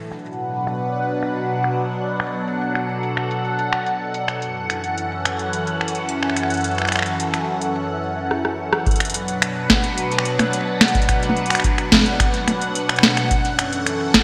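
IDM at 108 BPM in B minor, this brief cut from a longer piece feels cerebral and eerie, built on a straight 4/4 pulse. A swirling, detuned sawtooth analog pad sits up front, holding sustained chords with a slow attack and long release, its phaser and chorus lending it a warbling, vintage shimmer as it moves between Bm and F#m7. A booming analog drum machine enters at 0.1 seconds with finger snaps, metallic hats, rim clicks, a tonal snare and toms, the hats, snare and toms colored by low-pass filtering and the whole kit by gated reverb and delay, while a filter sweep runs across the drums through the opening stretch and a drum fill arrives at 8.3 seconds. At 8.9 seconds a deep electronic kick joins, grounding the second half as the chord cycle returns to Bm. The mix carries a bright 1980s-style digital sheen, washed in a lush hall reverb.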